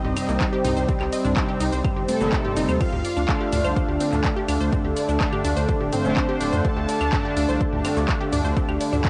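This driving, melancholic melodic techno excerpt opens with brassy, bold analog synth stabs up front, treated with chorus, tape echo and cassette tape grit. They sit over a round, deep analog bass and a punchy, overdriven analog drum machine of hi-hat, ride, crash, handclaps, claves, shaker and toms, all pumping against the sidechain. An overdriven electronic kick drum joins at 0.4 s, holding a straight 4/4 pulse at 125 BPM in a tuning of A4 = 437 Hz. Behind these, a lush, detuned unison pluck plays arpeggios, and a very quiet, moody analog pad with a slow attack and long release sustains the chords, moving from C minor to D minor at 2.8 s. In the background, a fat, full-bodied analog lead with vibrato carries the melody, and a smooth, soft-attack supersaw traces a second line above it; both run through tape echo and stop at 8.0 s. A moderate spring reverb and home-cassette recording give the whole piece a hazy, lo-fi character.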